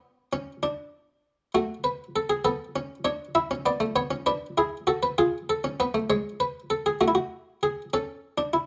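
Classical baroque-style three-part fugue excerpt at 66 BPM in a straight 12/8, contemplative and solemn, played by a solo buff-stop harpsichord whose muted, lute-like plucked tone sits up front and dry, framed by a dark production with light reverb, as its lines move through F#m/A, E5 and C# harmonies.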